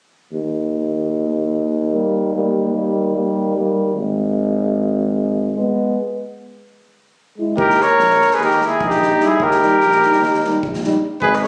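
Balkan folk for a brass band, this short cut from a longer piece moves at a brisk 297 BPM counted in eighths, in 9/8 with a straight feel, and carries a bittersweet yet fiery mood in Eb phrygian dominant. A warm, distant tuba opens the bass line at 0.3 s with light vibrato and a soft attack, sitting roomy yet up front. At 1.9 s two euphoniums join in accompaniment: one mellow and classical, the other with light vibrato and a more distant, roomy placement. A break arrives around 5.8 s, and at 7.6 s the second section begins as a mellow trumpet takes the melody up front with vibrato and a soft attack. A vintage-toned flugelhorn joins on a second line, along with an acoustic drum kit with a punchy kick, a medium-tuned snare and bundle sticks, the kit sitting low in the mix. The recording has a phone-in-the-room character, touched with light studio reverb and compression.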